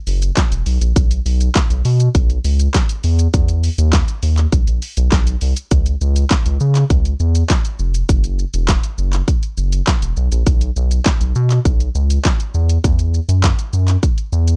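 A straight 4/4 pulse at 101 BPM drives this confident, energetic dance-pop cut, where a punchy, layered electronic drum kit of kick, fat snare, handclaps, hi-hat and shaker sits up front beside a round, deep analog bass with a dark, ring-modulated tone and sidechain pumping spanning E1 to C#3, both playing from 0.1 s to 14.6 s, with a new section arriving at 5.7 s, the mix captured dry and gritty on hardware, dull at the top, carrying a faint mains hum, and tuned to A4 = 442 Hz.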